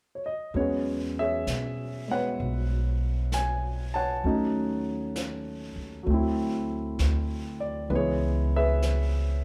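Light reverb gives this recording the feel of a band playing live together in one room, with the grand piano and upright bass sitting up front and the brushed drum kit softer behind them. It's a late-night, intimate jazz ballad in E major at 65 BPM in 4/4, with a gentle swing on the eighth notes, cut from a longer piece. The warm grand piano enters first at 0.2 s as accompaniment, and the woody, pizzicato upright bass and the natural-sounding kit join at 0.5 s. The kit uses brushes on a medium-tuned snare along with hi-hat, while the steel-strung bass holds the low end. The harmony moves from E69 through D#m7b5 and D9 to C#m7 before the passage ends at 9.4 s.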